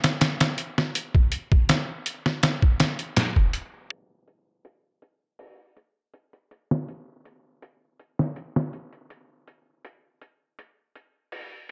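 Melancholic and cinematic, this trip hop fragment rests entirely on a sampler-style drum kit of kick, snare and hi-hat in a straight 4/4 feel, playing from the start through 11.5 seconds. The kit sits up front, pitched down, compressed and gritty, with a thumpy kick, a medium-tuned snare and a tape-warm tone in a small room reverb. A light reverb and a low-pass filter soften the overall sound, and the passage shifts into a new section at 3.9 seconds.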